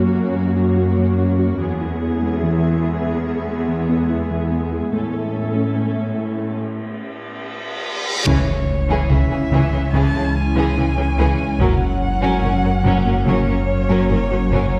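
Heard from further back in a wet scoring-stage space, this tense, relentless excerpt of a hybrid orchestral and electronic film score moves at 72 BPM in C# minor, opening with a glassy, warbling FM pad, a ringing harp-like synth pluck playing arpeggios through chorus and delay, and lush bowed viola and cello sections beneath. A break from 6.6 s brings an electronic reverse cymbal that lands on an impact at 8.3 s, where the music turns to C# minor and a dark, woody solo violin takes the melody over a background violin section, a distant studio violin second line with portamento, a very quiet double bass section and a deep, full sub bass with octave.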